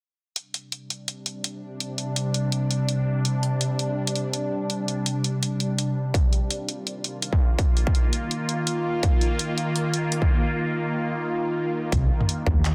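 A tense, string-like drone of detuned sawtooth voices enters at 1.1 s with sustained chords in C minor, carrying vibrato, phaser, its own reverb, sidechain pumping and a filter sweep across this dark, spacious half-time drum and bass passage at 166 BPM with a light swing. Layered electronic drums with handclaps, hi-hat and toms sit up front from the start, joined at 6.1 s by a distorted, tape-tinged kick. After a brief break, a deep, rumbling saturated saw bass arrives at 11.9 s, all within a dense, heavily limited modern master with light reverb.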